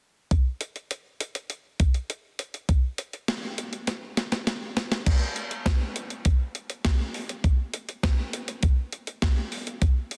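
Pop drum machine excerpt with a melancholic yet driving mood, moving in a straight 4/4 feel. The only part is a clean 12-bit digital drum machine with a sampler-style electronic character, sitting up front from 0.3 to 10.2 seconds. Its kit of kick, snare, hi-hat and crash cymbal pairs a thumpy kick with a medium-tuned snare, and the samples carry a tape-warm grain. A drum fill arrives at 3.9 seconds and leads into a second section at 5.1 seconds. Light reverb surrounds the kit, and the master is dense and heavily limited in a modern style.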